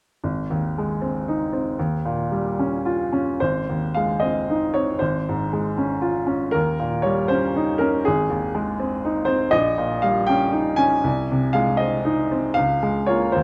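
A 6/8 pulse, pushed and pulled by rubato at roughly 68 to 83 beats per minute in dotted quarters, carries this passionate, hopeful romantic character piece for a bright, brilliant baby grand piano playing alone from 0.2 to 13.4 seconds in Ab major, its open, up-front tone spanning Ab1 to Ab5, caught by close, detailed microphones in light reverb as a short opening section gives way at 3.4 seconds to a longer passage moving through Db/Ab and Eb7 harmonies before the fragment, cut from a longer work, breaks off on Bbm7/Db.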